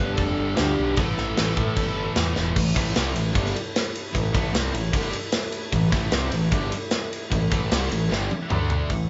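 Hard rock at 151 BPM in A minor, aggressive and menacing, opening with a warm, smooth overdriven lead guitar carrying the melody over a darker, bluesy second lead line, both falling away after 2.1 seconds. Underneath, three distorted rhythm guitars play the riff, one sludgy and very quiet, one tight, and one high-gain and double-tracked, while a growling, round picked bass pushes from below and a very quiet, warbling vintage pad with chorus sustains chords. Up front, a tight metal drum kit with bright cymbals enters at 0.2 seconds and drives the fragment, which is cut from a longer piece, with fills at 2.4 seconds and again from 8.1 seconds, all in a live-room sound with moderate reverb.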